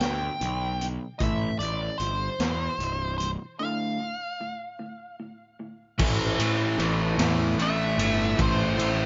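A slow, steady 6/8 pulse at 50 beats per minute, counted in dotted quarters, drives this bittersweet, anthemic fragment of quiet-loud alternative rock. From the start, a nasal lead guitar with a parked wah and overdrive sits up front, singing a melody in its upper register. Beneath it, a lo-fi, slightly broken-up electric guitar through a small old amp picks lush chorused arpeggios, while a growly, fuzzed electric bass holds the low end. A raw garage kit pushes its punchy kick, medium-tuned snare, hi-hat, ride and crash forward with gritty, saturated character and a rolled-off top. The harmony moves from G to A minor and then to D minor at a break at 3.6 seconds. At 6.0 seconds the arpeggios stop and the chords return to A minor as a heavier riff arrives: one bright, crunchy guitar, a quieter double-tracked twin, and a very quiet thick fuzz guitar, all heard in a small room with light reverb and a dark, capped top end.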